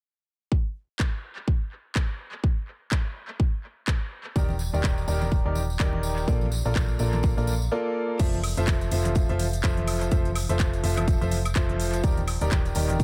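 The recording has an echo-heavy sound, with light reverb and a digital ambience. This is a euphoric, uplifting piano house cut at 125 BPM in 4/4 and F major, with swung 16ths and tuning at A4 = 439 Hz, taken from a longer piece. A punchy, up-front electronic kick opens at 0.5 seconds, and at 1.0 seconds a layered house kit joins with metallic hi-hats, crash cymbal, handclaps, cabasa and woodblock; it has a tape-tinged character, was re-recorded in a small room, and carries analog delay. At 4.4 seconds a clear concert grand piano riff arrives with deep bass, sidechain pumping and analog delay. Alongside it comes a round, dark FM bass with a fast attack and its own sidechain pumping, plus soft-handed tambourine and congas that sound compressed and saturated. The harmony moves from Ebmaj7 to Bbmaj7, then a second section settles on Fmaj7 before returning to Ebmaj7.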